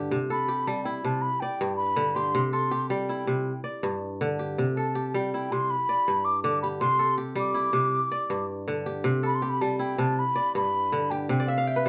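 A bright, ringing fingerpicked kora sits up front with arpeggios from the first instant, and a breathy concert flute with vibrato enters at 0.3 s to sing an expressive melody over the hypnotic, joyful C major sway of this West African traditional piece at 107 BPM in 12/8, circling between C and G in a wet small room that sounds like a band playing live together, before the kora closes with a fill at 11.4 s.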